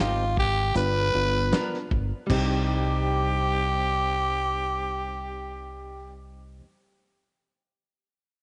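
A raspy, growling tenor saxophone with slapback echo carries the melody up front from the start of this brooding, smoky soul blues in C minor at 78 BPM. Beneath it sit a worn, slightly out-of-tune reed electric piano with light overdrive, clean picked electric guitar stabs with harmonic tremolo, and a round, direct fingered bass. A muffled, dry drum kit with dark cymbals and a tight kick plays only from 0.4 to 2.5 seconds, while the harmony moves from Cm to G7#9 and returns to Cm at 2.3 seconds, all in light small-room reverb with a top end that stops short of 11 kHz.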